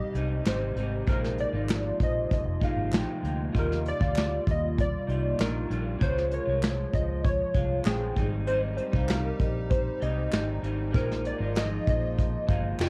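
A dreamy, laid-back slice of indie and bedroom pop at 97 BPM, led by a detuned analog keys melody, round and mellow, coloured by ensemble chorus, cassette tape and analog delay, over a slightly broken-up, twangy electric guitar through a small old amp and a hollow, flute-like pad holding sustained chords. A dark, foam-muted electric bass and a soft brush kit with a punchy kick sit up front, while a ringing vibraphone line with medium motor vibrato drifts in the background and a crisp, distant group handclap enters at 0.5 seconds. The chords move from Abmaj7 through Bb7sus4, Ebmaj9 and Dbmaj7 under light reverb, with the character of a home recording on cassette.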